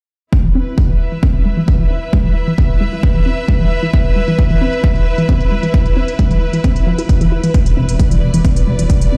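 The rhythm is a straight 4/4 at 133 BPM, driven by a heavy, overdriven electronic kick drum sitting up front, with smooth, overdriven hi-hats tucked lower in the mix, pumping against the kick and softened by a low-pass filter. This is intense, industrial peak-time techno in E minor, cut from a longer piece and heard as a single section. An analog pluck carries the riff between E3 and E4, its round, warbling, detuned sawtooth and pulse tone thickened by chorus and trailed by tape echo. A lush, woody string section with vibrato holds a bowed texture from E4 to E5 behind it, and both the pluck and the strings pump with the kick. Filter sweeps run on the drums and the synth arpeggio throughout. A growling, thick FM bass on E1 arrives only at 7.7 seconds, and the whole track sounds as if played on a big sound system in a bare room, with a large studio reverb around it.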